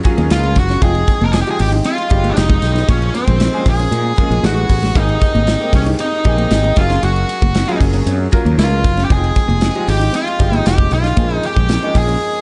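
A clear, short-sustained grand piano with analog chorus opens this polished 1980s jazz-funk pop excerpt at 116 BPM, alongside a tight, airy studio drum kit and a very quiet, jingly tambourine, and is soon joined by a growly, punchy fretless bass with lush chorus sitting up front. A dark, clean, fingered electric guitar riff with analog chorus stays in the background while an octave-fuzz lead guitar carries the picked, distorted melody over extended chords such as Gbmaj9, Fm9 and Bbm7. Light small-room reverb and a warm, rounded-off production frame the urban, glossy mood, with a band accent at 12.2 seconds.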